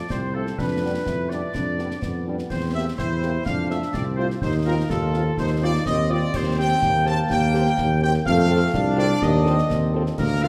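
A mellow, up-front tuba anchors this proud, spirited military-style march for wind band in F major, moving at 125 BPM in a straight 2/4, while a dark, tight trumpet section carries the melody and a woodwind section with light vibrato and a vintage character adds a second line. A distant, roomy trombone section holds sustained chords, and a French horn section with light vibrato sits in the background as accompaniment from 0.3 seconds. Close, dry concert snare, bass drum and clash cymbals with dark cymbals join at 0.1 seconds, all set in the wet bloom of a scoring stage reverb in this short cut from a longer piece.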